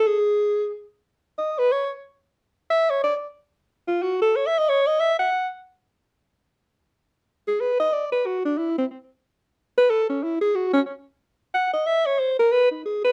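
Swinging and cool, this 13-second jazz excerpt in C# minor at 183 BPM features a mellow, up-front alto saxophone playing solo throughout, with vibrato, a smooth top and a touch of slapback echo, captured in a dry, close 1970s-style studio sound with light reverb.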